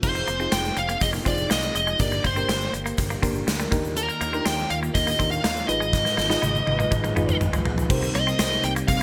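A smooth, overdriven lead guitar carries the melody up front, its picked notes trailed by digital delay, in this 9-second slice of nostalgic, uplifting 1980s-style pop at 122 BPM in 4/4. A gated 80s drum kit drives beneath it with a punchy kick, medium-tuned snare, bright cymbals, tambourine and toms in an airy stone-room gated reverb, and it breaks into a fill at 5.9 seconds. A round, warbling FM electric piano with chorus and a growly fretless bass with subtle chorus carry the harmony through Fm7, Gm, Ebmaj7 and Abm6, then move to Cm7 at 7.9 seconds. A twangy, compressed clean guitar riff with lush chorus and delay sits in the background, while very quiet sawtooth string-machine violas hold sustained chords and a grainy egg shaker adds faint texture. Moderate plate reverb and bright digital 1980s-style production tie the sound together.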